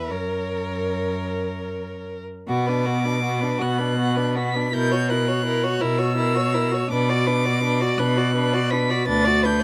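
A rubato 6/8 pulse, counted in slow dotted quarters at 49-56 BPM, gives this classical string quartet movement a solemn, elegiac sway in B minor. The first violin sings the melody high in its range with a rich, smooth, even tone and vibrato, while the second violin adds a close, warm second line in the middle register. The viola supplies the accompaniment with a clear, focused sound, and the cello anchors the bass, sitting up front in the balance with vibrato. The harmony moves from F# to B minor as a new section opens at 2.5 seconds, passes through F#7 over B, and returns to B minor before settling on B minor over D at 9.1 seconds. Close, detailed microphones and light reverb frame this intimate passage, cut from a longer piece.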